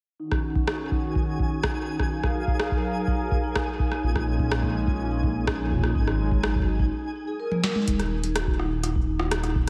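Glitchy and intricate, this IDM excerpt sets soft-mallet vibraphone arpeggios, coloured by vintage 12-bit sampler grit, a filter sweep and slapback echo, over a hollow, flute-like chorused pad and a twinkling granular shimmer, while a booming analog drum machine with crisp snare and metallic hats pairs with a deep electronic kick, a rumbling detuned saw bass enters at 4.0 s, and a break at 6.9 s leads through a drum fill into a new section at 7.9 s, the whole set in a big arena-like space.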